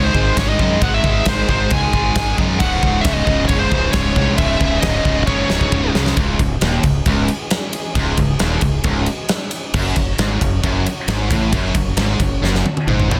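Dry and densely limited, this modern heavy metal recording, cut from a longer piece, sounds epic and aggressive at 134 BPM in a straight 4/4, set in C# harmonic minor. A smooth, overdriven lead guitar carries the melody with tape echo until 5.9 seconds. Beneath it, three picked rhythm guitars play low riffs in the background: two bright overdriven parts and a tight, double-tracked distorted one. A growling fingered bass, amped and overdriven, anchors the low end, while a big acoustic kit sits up front with a fat snare, punchy kick, crash, ride and toms, and drum fills close each of the two sections. A lush studio string section bows very quiet sustained chords with vibrato and portamento behind the band as the harmony moves from G# to C# minor and later to F#5.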